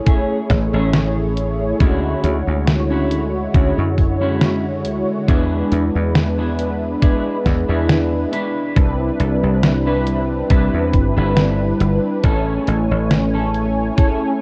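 Vaporwave at a slow 69 BPM in A major, this short cut from a longer piece feels nostalgic and dreamy, with a gentle swing on the sixteenths. Mellow synth brass carries the accompaniment from the first moment, its detuned sawtooth tone round and brassy, colored by analog chorus, vintage 12-bit sampler grit and tape echo. A clean, fingered electric guitar plays a dark riff through lush chorus, a low-pass filter and tape echo, while a dry, punchy thumbed slap bass joins at 0.5 seconds with a bright, foam-muted bite. Up front, a thumpy electronic kick drum and a detuned 8-bit digital drum machine supplying hi-hat and a medium-tuned snare sit in a small room ambience with a tape-warm, sampler-style character. The harmony drifts from Amaj7 through Dmaj9#11, E7 and Cmaj9 before returning to Amaj7, all wrapped in a dark cassette-tape production with light digital reverb.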